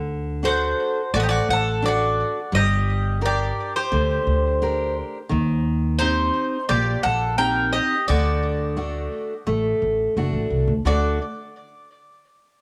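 Brooding and moody, this Greek folk excerpt moves at an unhurried, straight pace as a fingerpicked steel-string guitar and a dark, woody pizzicato upright bass open together up front, joined at 0.5 seconds by a bright, metallic Greek bouzouki carrying the melody with tape echo on its double strings. A bowl-back mandolin adds a warm, picked second line beneath, while the chords pass from D through Gm and Eb6 before returning to D at 8.1 seconds. The band sits in a small room ambience with moderate echo-chamber reverb.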